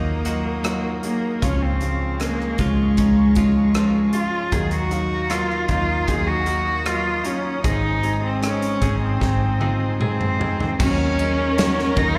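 Heard as a live gig through a venue's PA with a recital-hall reverb, this excerpt of a tender, emotional pop ballad moves at 77 BPM in 4/4 over Ebm, Db and Ab chords. A rich, bowed cello with smooth vibrato carries the melody up front, backed by a soft felt-muted upright piano with audible action noise, lush sustained studio strings, a bright, twangy clean electric guitar playing arpeggios, a dark, round foam-muted bass and an acoustic drum kit with a punchy kick and a pumping small-room sound. After a drum fill from 9.2 s, the section shifts to Ebm7 at 10.8 s, where an expressive symphonic violin section and a very quiet, jingly tambourine join in.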